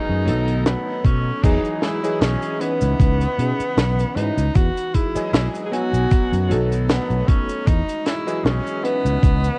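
A bright, punchy tenor saxophone with scooped notes and vibrato carries the melody through tape echo from the start, over a chorused electric grand piano with a clangy low end and a faint, warbling square-and-triangle pad, in a woozy, faded vaporwave excerpt at 77 BPM in E major with a light swing. A growly, up-front fretless electric bass, a tight funk kit with dark cymbals, a high-tuned snare and cabasa, and a thumpy electronic kick settle in by the one-second mark, while a dark, fingered electric guitar with chorus and 12-bit sampler grit slips into the background at 1.8 seconds. Chords drift between Emaj9, C#m9 and B7, a clean electric guitar fill appears at 6.1 seconds, and the whole mix sits in a light studio reverb with worn cassette warble and pitch drift.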